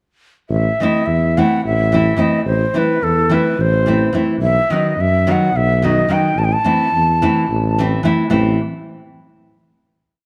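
A breathy ney carries motif-based song phrases with a soft attack and rolled-off highs up front in this short, complete Balkan folk piece in 7/8 at 215 BPM, bittersweet yet fiery in A Dorian sharp 4. A woody, full-bodied nylon-string guitar fingerpicks off-beat triad chords while a mellow, smooth-topped tuba plays root and fifth on the main beats, moving from Am to B and back to Am. The ney falls silent at 7.8 seconds, and a final chord from 8.3 seconds rings into a moderate recital hall reverb, all in a dark production.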